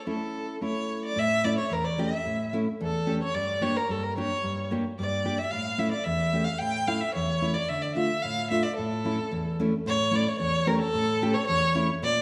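Set in a straight 2/4 at 110 BPM, this klezmer excerpt moves with a steady, festive step shaded by a bittersweet mood in A phrygian dominant, tuned slightly high to A4 = 441 Hz. A single bowed violin carries the melody from start to finish, its tone rich, smooth and even, warmed by vibrato, placed up front yet carrying a distant quality. A fingerpicked nylon-string guitar accompanies throughout, bright and acoustic with a deep classical body, also sitting up front. The harmony circles around A, stepping to G minor at 3.3 seconds, returning to A at 5.5 seconds, then moving to D minor at 7.7 seconds before settling back on A at 8.8 seconds. The form is brief, a short opening idea giving way to a longer middle stretch from 1.2 seconds and a return of the opening material at 9.9 seconds, all heard through the wet reverb of a recital hall that lingers around the two players as this fragment of a longer piece closes at 12.2 seconds.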